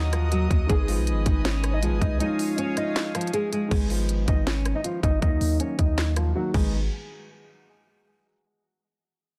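Trap hip hop in a brooding, half-time mood, cut from a longer piece: a fingerpicked nylon-string guitar carries the melody through a low-pass filter and digital delay over a mellow grand piano and distant, reedy chamber strings, while a boomy, up-front 808 bass and an up-front trap kit of hard-clipped kick, sharp snare, crisp hats, handclaps, rim clicks and crash drive a dense, heavily limited mix; the kick drops out from 2.2 seconds, the strings stop and a filter sweep begins at 3.7 seconds, and the drums fall silent at 6.4 seconds.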